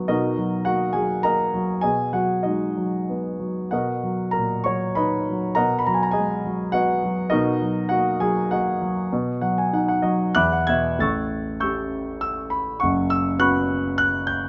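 A concert grand piano sits up front in a light reverb, its tone warm with a deep bass reaching down to F#1 and climbing as high as A6. This is a fragment of a longer classical piece for lyrical solo piano, moody and bittersweet, in 3/4 with a rubato feel that drifts between 91 and 106 BPM. The music is in B major, tuned to A4 = 439 Hz, and opens by rocking between Bmaj7 and G#m7/B. At 9.1 seconds a brief piano fill settles on B before E7 adds a darker color. From 11.0 seconds a new passage turns through A7 to an unresolved F#sus4, and the fragment breaks off at 14.5 seconds.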